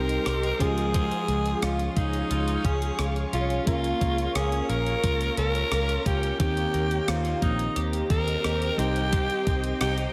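1980s-style pop at 88 BPM in Eb mixolydian, glossy and uplifting, led by a raspy, gritty alto saxophone up front with diffuse ambient delay, over a foam-muted picked bass, a thumpy 12-bit drum machine of kick, hi-hat and rim click, a warbling FM electric piano and a chorused twelve-string guitar riff in the background, and an ethereal phased pad, all in a dreamy, reverb-soaked mix moving from Cm through Db, Bbm and Eb6 in this short cut from a longer piece.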